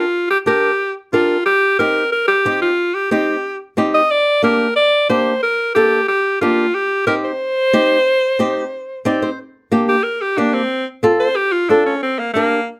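Set in a moderate studio reverb, this fiery, driving Latin excerpt moves at 182 BPM in G minor, cut from a longer piece. An edgy, punchy alto saxophone sits up front with forceful pop-style vibrato over a fingerpicked acoustic flamenco guitar, equally forward, while the harmony rocks between G minor and C minor. After a brief guitar fill at 8.9 seconds, the saxophone takes a solo from 9.4 seconds as the chords move through G minor, F and back.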